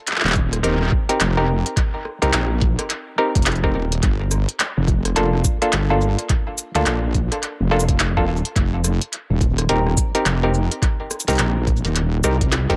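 An echo-heavy mix with a moderate spring reverb frames this gritty, playful glitch hop excerpt at 106 BPM, swung on the sixteenths and moving from F7sus4 to Gm9 at 4.0 seconds and back at 8.6 seconds. Up front, a heavy, wobbling sawtooth-and-sine bass with chorus and saturation sits alongside a thumpy, pitched-down, tape-tinged electronic kick. A glitchy kit of tiny snare, clicky hats, rim click, shaker and handclaps carries a tape echo, as does a muted, stringy clav whose overdriven stabs pump against the sidechain with 12-bit sampler grit, before a drum fill at 12.5 seconds.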